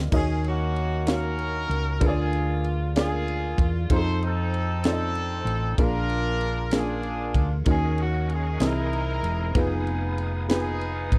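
This excerpt from a slow, fervent and solemn gospel piece in 6/8 at 64 BPM in Eb minor opens on a worn, slightly detuned upright piano with audible action noise and a round, hollow-body electric bass, joined almost at once by a crisp fusion kit with a high-tuned snare, punchy kick and dark cymbals. A horn section with light vibrato carries the melody from 0.2 seconds over chords moving from Ebm7 through Bb7/D and F7 to C7alt and Fm7b5. At 7.6 seconds a reedy tonewheel organ with key click and slow rotary speaker slips in behind with sustained chords, all within a dry, close 1970s-style studio sound.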